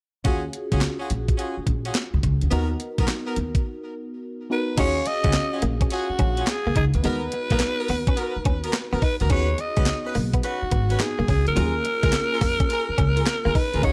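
A slick, bouncy new jack swing groove in Eb minor opens at 106 BPM, with a tape-warm, sampler-style drum machine up front: a thumpy kick, medium-tuned snare, handclaps, hi-hat and crash cymbal, all swung on the sixteenths. Underneath, a woody, dark upright bass with gut strings plucks the low end, while a warbling, vintage FM electric piano colored by a phaser lays down mellow chords, and a jazz-style horn section punctuates them with present ensemble stabs. During a short break that begins at 3.6 seconds, a breathy, raspy alto saxophone takes the melody at 4.5 seconds, bright and gritty with vibrato and scooped notes in a pop style. A clean, compressed electric guitar, recorded direct with a subtle chorus, joins at 4.8 seconds with a picked riff as the harmony moves through Ebm11, Abm9, Db7sus4 and Gbmaj9. The sound is dry and close, and the clip is cut from a longer piece.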